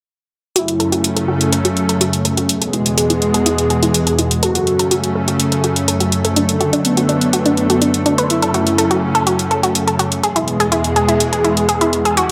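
Overdriven, metallic electronic hi-hats sit up front in a straight 4/4 at 124 BPM, driving this dramatic, hypnotic melodic techno excerpt in F# minor, with every part running from 0.6 to 12.3 seconds over a F#m, E, D/F# progression. A lush, thick unison pad with slow attack and long release holds bright sustained chords up front. A round, nasal analog pluck spins chorused, tape-echoed arpeggios through a filter sweep with cassette-tape grit, while a fat, brassy, detuned synth-brass melody with vibrato and analog delay sits mellow in the background, all soaked in a dreamy wet plate reverb.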